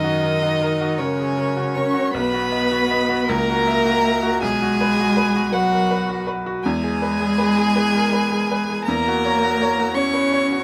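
Strings and piano sound together from the very first moment in this serene, tender slow romantic movement for piano quartet, heard as a short excerpt from a longer piece in 6/8 with rubato. The first violin carries the melody up front with a smooth, even tone and vibrato. A second violin sings an expressive inner line below it, bowed with vibrato and portamento slides. The cello adds its own warm second line with a soft attack, vibrato and portamento. A bright, brilliant baby grand piano supplies the accompaniment with long, natural sustain. Close, detailed microphones and light reverb give an intimate sound, and all four instruments play throughout the 10.6 seconds.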